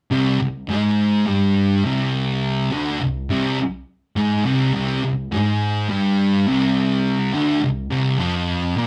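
Metal at 104 BPM in a straight 4/4, heavy and ominous, cut from a longer piece and tuned to A4 = 444 Hz. Two thick fuzz guitars, electric, dark and picked, play a distorted riff up front from 0.1 to 8.9 seconds, ranging from C2 to Bb3 over a C5 chord. The band plays live in one room with moderate studio reverb.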